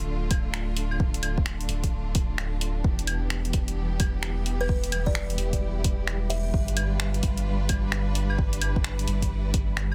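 A round, sine-like sub bass sits up front in this wistful, nocturnal future garage excerpt at 130 BPM in 4/4, with a 63% swing on the 16ths, and its tube saturation and sidechain pumping give the low end its weight. Above it, a lush, bowed symphonic string section holds sustained chords through Dm, Em7 and G7, its vibrato focused and smooth-topped, and it also carries sidechain pumping. Just after the start, a deep electronic kick and a deep house kit of claves, finger snaps and hi-hat come in, tape-toned and re-recorded in a small room, with soft clipping on the snare. A grainy, flickering granular texture with its own reverb drifts in the background from 3.4 seconds, and a buzzing, woody kalimba with delay rings out a brief hollow-box melody from 4.6 to 6.6 seconds. The whole excerpt sits in a digital ambience with a dense, heavily limited modern master.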